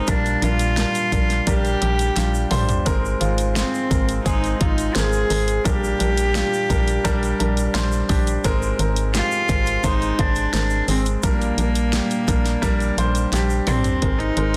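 Uplifting and anthemic, this piano-driven pop piece moves at 86 BPM in Bb mixolydian, with a single bowed cello carrying a pure, floating melody up front over polished grand piano chords that alternate between Bb6 and Abadd9. Beneath them, a hollow, organ-like FM bass gives dark, decaying notes, while a punchy, layered pop drum kit with a fat snare adds fills at 2.2 and 13.3 seconds, and a grainy tube shaker sits in the background. Light reverb and studio ambience surround a dense, heavily limited modern master, in a short passage cut from a longer piece.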